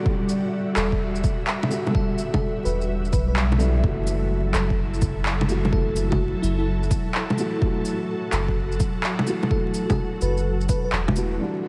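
A muffled, felt-muted upright piano with 12-bit sampler grit and analog delay opens this melancholic, wistful future garage fragment alongside a detuned, warbling airy pad, before overdriven layers of electronic shaker, handclaps, bongos and cabasa, a punchy kick and a round, pumping dub sub bass settle in beneath them; a faint, bell-like FM electric piano with chorus, tremolo and cassette tone drifts in at 0.8 seconds over swung sixteenths and the Em9 to F#m7 change, all set in a dreamy cathedral reverb with vinyl crackle.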